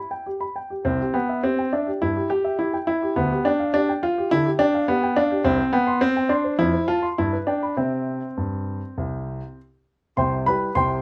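Playful and graceful, this short passage, cut from a longer classical-period piano sonatina, moves at 103 BPM in 4/4 with a flexible, rubato feel in C major, tuned slightly low to A4 = 439 Hz. A solo baby grand piano carries the whole 11-second recording, ranging from C2 up to C6, with a natural, warm tone and short sustain placed up front in the sound. The harmony stays close to home, moving from G to C, through G5/D and C5, then F and G before settling on C at 7.8 seconds. Light reverb gives the piano a little air, while lossy compression artefacts hint at the recording's limits.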